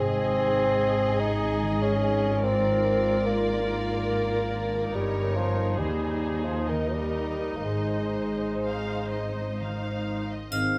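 A moderate recital-hall reverb surrounds close, detailed microphones in this elegiac, solemn excerpt from a slow romantic orchestral movement in Ab major, moving in a rubato 3/4 at 60-74 BPM. Muted, veiled violin sections carry the melody and a second line over muted violas, a lush distant double bass section and cellos, while a mellow bassoon sits up front in the accompaniment and a thumb-plucked concert harp rings out arpeggios in the background. Around 10.5 seconds, after the harmony has already settled from Eb back to Ab, the strings fall away and a warm oboe, a dark clarinet, a mellow French horn section and a close, dry triangle enter briefly.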